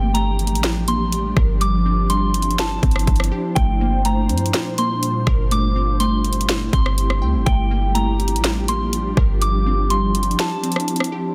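A deep, boomy 808-style bass sits up front in this spacious, ethereal cloud-rap excerpt, its clean sine tone striking fast and decaying across G1 to G2 until it drops out at 10.4 seconds for a short break. An electronic trap kit shares the foreground at 123 BPM in a half-time 4/4 feel, with a hard-clipped kick, sharp snare, bright hi-hats and rim clicks all roughened by overdrive. Beneath them, an airy pad of detuned sawtooth and triangle voices holds sustained chords in G dorian with a slow attack and long release, thickened by ensemble chorus and its own reverb and pulsing with sidechain pumping. A soft, pure FM bell carries the melody high between G5 and D6, treated with chorus, phaser and delay, while a glassy, crystalline wavetable pluck spins arpeggios in the background through chorus, delay and a filter sweep. The harmony moves through Gm9, Dm9/G and Am7/G over a steady G, and the dense, heavily limited master with light reverb gives the roughly 11-second clip a polished, floating sheen.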